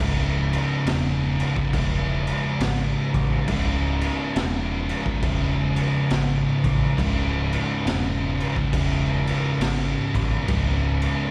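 Crunchy, bright overdriven guitar, double-tracked, and two thick fuzz guitars, one dark and one warm, all sitting in the background, open this heavy, sludgy stoner and doom metal excerpt on a single C#m chord, with a growling, overdriven picked bass underneath. At 0.5 seconds a raw garage drum kit arrives up front, gritty and saturated with a punchy kick, a high-tuned snare, crash cymbal and a rolled-off top, all carried by a swung feel. The sound is that of a live gig heard through the venue's PA, with a light, recital-hall reverb around it.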